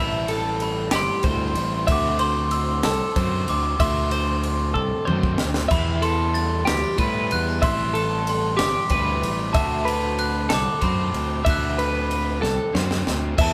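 A ringing, bell-like glockenspiel played with soft plastic mallets carries the melody in a bright, playful math rock and midwest emo passage, moving in a straight 6/8 at 63 BPM over a chord cycle of Am9, D9, Em7, Am9 and D13. Beneath it, a compressed twelve-string electric guitar spins sparkling arpeggios, a very quiet direct-recorded clean guitar adds picked accompaniment, and a double-tracked, overdriven semi-hollow guitar plays a warm riff from the background. An up-front fuzz bass growls underneath while a crisp, polished fusion kit with a punchy kick, high-tuned snare and dark cymbals enters at 0.3 seconds and breaks into fills at 4.8 and 12.4 seconds, all in a moderate studio reverb that suggests a band playing live in one room.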